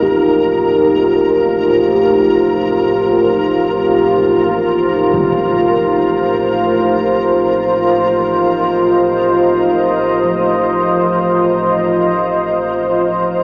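A deep, moody pad sits up front holding a sustained Cm7 chord under chorus and its own reverb, while a pure, ringing quartz singing bowl plays mellow arpeggios through tape echo, a nasal rumbling drone on A1 and a grainy, flickering texture hover alongside, and a huge but distant impact lands at 5.1 seconds in this ominous, desolate dark ambient drone in free time, heard through a wet echo chamber with a cassette, small-speaker sound.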